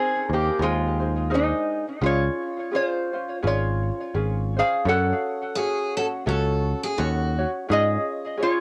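A metallic, nasal lap resonator guitar, played with fingerpicks and slide and treated with analog delay and cassette tape, carries the melody up front in this languid, relaxed Hawaiian excerpt at 85 BPM in Db major with a gentle swing, over a light, fingerpicked, tape-coloured ukulele and a dark, round picked electric bass that enters at 0.3 s, while a bright picked steel-string acoustic guitar, also on tape, adds a short second line from 5.6 s to 7.5 s, the whole home cassette recording sitting in light reverb.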